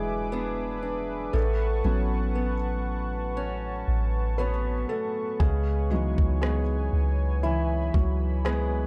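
A slow 4/4 pulse at 59 BPM, lightly swung on the sixteenths, carries this moody, sensual contemporary R&B piece in C# minor, cut from a longer work. A felt-muted upright piano sits up front and takes the solo from the start, its soft, mellow tone dark and intimate, with the action noise of the keys audible and a vintage character. Beneath it, a deep, round 808-style bass with a fast attack and decaying tail anchors the low end. A fingerpicked acoustic archtop guitar adds arpeggios with delay and a little finger squeak. A detuned sawtooth pad holds sustained chords above the piano with chorus and tremolo. The harmony moves from E7 to A69, and at 5.4 s, as it arrives at C#m7, a smooth electronic drum kit enters, pairing a knocking kick with rim clicks, all within a dark, dry production.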